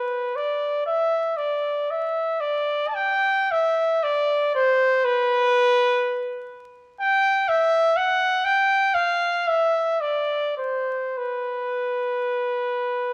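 The rhythm moves in a free, rubato 4/4, with the pulse stretching and relaxing at the player's discretion. This is a classical piece for unaccompanied trumpet, a fragment cut from a longer work, and its mood is yearning and mournful. The solo trumpet plays from 0.0 to 13.1 seconds within a range of B4 to A5, with a clear tone that sits up front yet feels distant and roomy. A moderate scoring-stage reverb with a 1.7-second decay surrounds the line, and the production leans dark, with vinyl crackle beneath. The instrument is tuned to A4 = 439 Hz.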